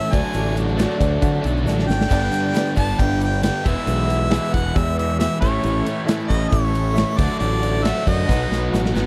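A dry, close 1970s-style studio sound frames this confident, swaggering classic rock excerpt at 136 BPM, where a clear, close-miked harmonica with light vibrato and scooped notes carries the melody over a jangly, detuned honky-tonk upright piano, a very quiet tonewheel organ holding thick chords through a slow rotary speaker, three overdriven guitars playing riffs in the background (one compressed, one hollow-body, and a raw, double-tracked garage guitar with phaser), a growly, up-front fingered bass, a big rock kit with a punchy kick and bright cymbals that fills at 1.7 and 8.3 seconds, and a faint, grainy tube shaker, all moving through D, G, E, A, D and B.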